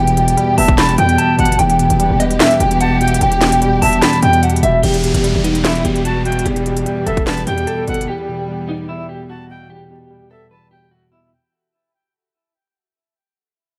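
A slightly broken-up electric guitar through a small old amp carries the brooding melody with tremolo and tape echo over a worn, lightly overdriven tine electric piano, lush bowed strings in the background, a breathy jazz flute second line, a heavy distorted 808-style bass and a half-time trap kit with a hard-clipped kick, sharp snare, handclaps and crisp hats, all under vinyl crackle, until the hard-hitting excerpt begins fading out at 4.8 s and the bass and drums stop at 8.1 s as a downlifter ends.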